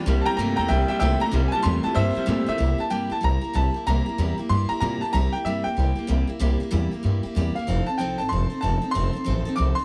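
A brilliant, woody upright piano carries the melody and takes a solo over the first 2.6 seconds of this retro, rowdy rockabilly excerpt at 189 BPM with a swinging feel in C mixolydian, backed up front by a full-bodied picked steel-string acoustic guitar with audible finger squeak and a thumpy, gut-string pizzicato upright bass, while a twangy, slightly broken-up electric guitar riff with spring reverb drops out as the solo ends, the whole band set in a lightly reverberant room as the chords move from C7 to F7.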